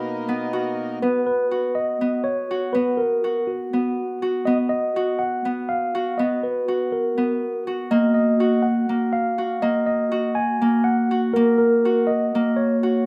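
Moving in a straight 7/8 at 244 BPM counted in eighths, this hopeful, shimmering contemporary chamber piece in B lydian sets a mellow tine electric piano melody, clean and heard through its built-in speakers, above bright, ringing fingerpicked Celtic harp arpeggios, while a reedy, breathing, vintage pedal harmonium holds sustained chords only for the opening second before the harmony moves from Bmaj7 to B and then to D#m at 7.9 seconds, captured close and in detail within a moderate recital hall reverb.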